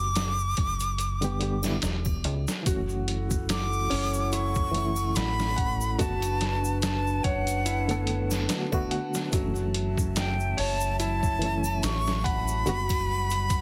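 Dry, close and heavily compressed with a radio-like squeeze, this cinematic trip hop excerpt moves at 72 BPM with a light swing, its hypnotic pull rooted in F# phrygian over chords drifting from Gmaj7/F# through F#m7 and Bm7/F#. A breathy, bright jazz flute carries the melody up front from the start, its expressive vibrato and soft attack trailed by tape echo, while a deep, round fingered electric bass sits beneath it. From 0.2 seconds a gritty, pitched-down sampler-style drum kit thumps forward with hi-hat, kick and a medium-tuned snare, joined more faintly by egg shaker and triangle with a small-room acoustic feel. A reedy electric piano with fast tremolo and tape echo adds clean accompaniment from 1.2 seconds. At 2.7 seconds a moody, detuned analog pad with chorus and 12-bit sampler grit enters with sustained chords, alongside a felt-muted upright piano whose soft, intimate arpeggios carry audible action noise and their own tape echo.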